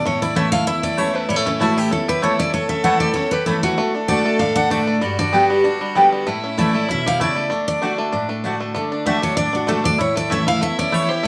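Bluegrass with a driving, lively swing, this cut from a longer piece captures a band playing live together in one room, wrapped in a wet studio reverb. A bright, up-front jumbo acoustic guitar carries the picked melody on fresh strings, while a second, full-bodied dreadnought guitar supplies the accompaniment underneath. A clear, earthy fiddle adds a bowed second line with light vibrato, sitting distant in the mix. The twangy banjo plays percussive arpeggios with fingerpicks, and a woody mandolin comes in at 0.4 s with double-string stabs. The chords move through A, D and G, returning to A by 10.0 s.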